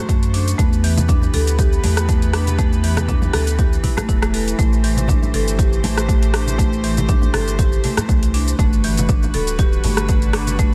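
The groove moves at 120 BPM in 4/4 with a light swing on the 16ths, setting up a spiritual afro house passage in A dorian, cut from a longer piece. A punchy, layered electronic kick leads the drums, joined by an overdriven kit of metallic hi-hats, rim click and shaker, both sitting in a small room ambience. Bright, close congas played with soft hands enter at 0.6 s and stay tucked in the background. Beneath them, a deep, round sine sub bass holds sustained notes with a fast attack, pumping against the kick along with the upper parts. A woody marimba on padauk bars plays arpeggios in the mid-range with medium mallets, its notes trailing a dub echo. A reedy string section with a gut-string, period-style tone and light vibrato bows sustained chords through D7, Em, Am7 and Gmaj7, in a dry, close mix with little reverb.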